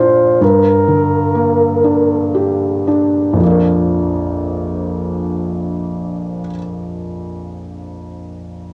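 Tender and swaying, this short pop excerpt in a lilting 6/8 opens with a breathy, whispered flugelhorn singing a jazz-tinged solo line with gentle vibrato through cassette-tape echo until 2.4 s, over a soft, felt-muted upright piano that sits intimate and up front, carrying the accompaniment to 8.7 s as the tempo eases back in the opening seconds and the harmony moves from Gm to Bb, all within a home-recorded cassette sound bathed in short, wet studio reverb.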